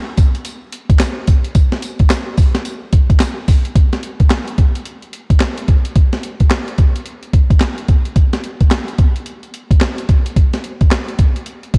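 Slick and punchy, this R&B excerpt features a boom bap sampler-style drum kit that enters at 0.2 s and carries the whole passage with kick, snare, hi-hat, handclaps and tambourine over a swung sixteenth-note feel in 4/4. The up-front kit is gritty, compressed and tape-warm, with a thumpy kick and a high-tuned snare, and it sounds re-recorded in a large room. The production is dark with light reverb, and a new section begins at 3.8 s and runs to the close at 11.8 s.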